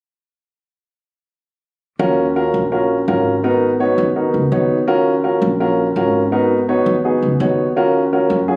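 Fiery and sophisticated, this jazz excerpt in Eb minor moves at a brisk 166 BPM in straight 4/4, with a warm, natural concert grand piano up front comping through Ebm7 and Abm7 over a woody pizzicato upright bass with steel strings, both playing from 2.0 to 8.6 seconds in a club-like room captured on a phone with a dulled, capped top end.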